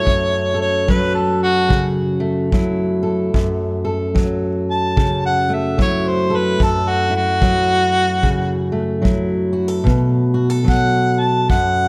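Smoky and soulful, this short cut from a longer acoustic country blues piece moves at an unhurried swung pace in 4/4. A mellow harmonica carries the melody as a jazz-styled solo throughout, its scooped notes and light vibrato sounding distant and roomy yet still up front. Beneath it, a fingerpicked steel-string acoustic guitar supplies accompaniment with a dark, woody tone from old strings, its auditorium character placed up front as well. A punchy acoustic kick drum played with brushes keeps time from 0.1 seconds, set in a studio room sound. The harmony rests on F#m7 before shifting to B7(no3) at 9.9 seconds, all bathed in a moderate concert hall reverb.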